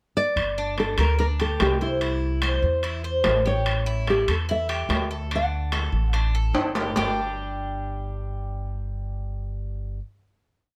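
A thumb-plucked nylon-string guitar carries a motif-based song melody from 0.2 seconds in this short, warm and danceable Cuban son and guajira piece at 145 BPM, set over a woody, thumpy pizzicato upright bass whose tumbao anticipates the chords, ringing metal-shell timbales playing shell pattern and bell until a drum fill leads to their stop at 7.1 seconds, and a metallic, double-strung Cuban tres picking an arpeggiated guajeo, the lightly reverberant arrangement closing on a final chord from 7.0 seconds.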